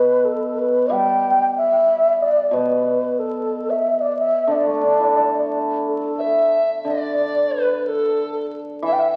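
A low xiao opens this graceful, pastoral piece of Chinese traditional chamber music, its airy, mellow bamboo tone carrying the melody with expressive vibrato and crisp attacks, while a hammered dulcimer accompanies beneath with shimmering, ringing strings. The playing moves freely in a rubato feel. At 6.2 seconds a large dizi joins as a second line, its pure, straight tone colored by the buzz of its membrane. The ensemble sits in a reverberant recital hall, and the whole sound is heard through the crackle of a very old 78 rpm record. The passage is cut from a longer piece and ends at 9.2 seconds.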